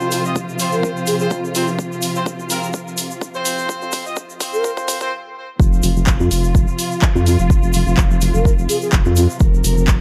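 A dry, tightly produced slice of bouncy, aggressive bass house, where a nasal, wobbling vowel-sweep bass pumps up front beneath veiled, muted strings, roomy horn stabs that stop at 5.1 seconds, brief breathy flute phrases with delay, a grainy egg shaker, house kit handclaps and hats, and a punchy electronic kick entering at 0.4 seconds, as a build-up with a drum fill halts for a short stop before the drop hits at 5.6 seconds.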